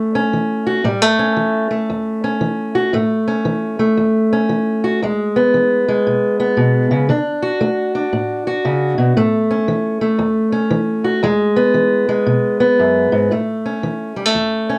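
A swung eighth-note feel in 4/4 at 116 BPM drives this short blues in A major, giving it a rollicking yet laid-back gait. A single fingerpicked steel-string acoustic guitar carries the whole piece, playing solo across its low and middle register from E2 up to F#4. The parlour-style instrument sounds woody and boxy, with the slightly dull bite of old strings, and sits up front in the mix. The harmony moves from A to E at 5.0 seconds, then on to D, back to A and E again before returning to A at 13.3 seconds, where a brief new section begins. A moderate small-room reverb and a dark production lend the guitar an intimate, lived-in quality, and the piece is cut from a longer performance.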